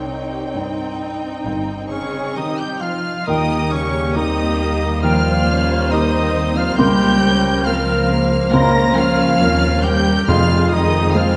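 A distant, lush violin section carries the sorrowful melody high above this slow, rubato cinematic passage, moving freely at around 65-70 BPM in 4/4 over a harmony that shifts from C minor to E-flat, then to a B-flat minor add-nine chord over D-flat, and finally to F minor. Beneath it, a second, darker and woody violin section traces its own line. A smooth viola section sits in the background, and a focused cello section and an expressive double bass section form the bowed foundation. A felt-muted upright piano adds soft, intimate accompaniment with audible action noise and short sustain. A cor anglais joins at 1.9 s with a warm solo line, and at 3.3 s a roomy clarinet, a hollow flute and a distant French horn section enter, the horns holding sustained chords. Near the close, timpani struck with medium mallets arrive at 10.3 s, all set in a moderate scoring-stage reverb that gives this fragment of a longer piece a moving, spacious sound.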